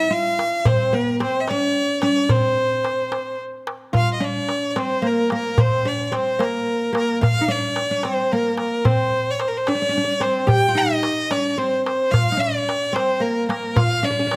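Arabic maqam ensemble music, warm and festive, moves at 73 BPM in a straight 6/8, starting in C maqam huzam and shifting to C maqam bayati at 3.9 s, as a rich, smooth bowed violin with vibrato carries the melody up front, a mellow, woody fretless oud with double strings plays a plucked second line beneath it, and a crisp, dry metal-shell darbuka struck with hard hands joins at 0.4 s, all caught by close, detailed microphones with light reverb in this cut from a longer piece.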